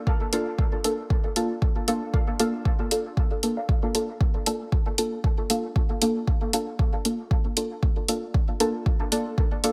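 Cavernous and hazy, this short cut from a longer dub techno piece rides a lightly swung 4/4 groove that begins on a Bbmaj7 chord. Up front, a soft, nasal chord stab with a dark, plucky filter shape carries the harmony, coloured by chorus and phaser, pumping against the beat and trailing off into dub echo. Behind it, a muted, detuned second stab with a sub-octave weight plays a riff in the background until about 4.0 seconds, its evolving tone thickened by lush chorus, phaser, sidechain pumping and echo of its own. An overdriven, layered kick with a small-room edge drives the track from 0.1 seconds, joined by a tape-warm analog hi-hat. A filter sweep moves across the synth stab through each of the two matching sections, and the whole mix sits in a digital ambience.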